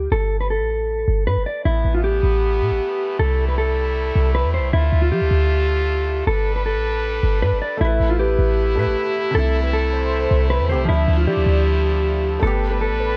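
A half-time hip hop groove at 156 BPM in 4/4 sets a dreamy, wistful mood in C major, anchored from the start by a clean 808-style bass that sits deep, boomy and up front with a fast, decaying attack. A mellow electric guitar carries the melody throughout, dark, compressed and fingered, softened by a low-pass filter. At 1.7 seconds a muted French horn section enters with sustained chords, its stopped, nasal and metallic tone carrying a light vibrato and a smooth top. At 7.8 seconds a felt-muted upright piano joins in accompaniment, intimate and soft with audible action noise, also filtered. Shortly after, a velvety synth lead adds a second line in the background, its detuned sawtooth and triangle unison washed in chorus and delay. The harmony cycles through suspended, sixth and added-ninth chords such as Gsus2, C6 and Dmadd9, heard in a dry, close mix that is cut from a longer piece.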